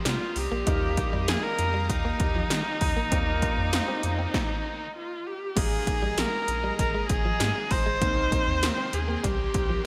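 Uplifting and romantic, this short 1980s-style pop passage in a straight 4/4 is carried by a single bowed viola up front, its expressive line sung with vibrato, portamento and a smooth top over a shimmer reverb. Punchy electronic pad drums sit equally forward, with a gated snare, metallic hi-hats, kick, crash and tambourine, while a round analog bass gives a deep, dark, sustained foundation. In the background, a direct-recorded clean electric guitar plays a bright, compressed, scooped riff, and a double-tracked overdriven guitar and an intimate grand piano, its action noise audible, add accompaniment through lush chorus. A detuned pulse-width pad holds shimmering, retro chords high above. The harmony moves through Cm7, Ebadd9 and Absus2, with a stop from 4.3 to 5.6 seconds before the phrase returns, all set in a lush hall with a bright digital sheen.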